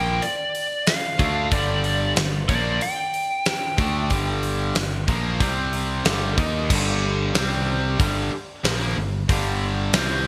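Menacing and heavy, this hard rock excerpt in straight 4/4 pairs a biting lead guitar with overdrive and digital delay, whose melody runs only until 6.0 s, over a bright up-front overdriven guitar riff alongside a cranked stack guitar with subtle chorus in the background, a growly, punchy picked electric bass, and a big rock drum kit with a fat snare, tight kick and gated reverb, all set in a bright 1980s-style digital production with moderate plate reverb.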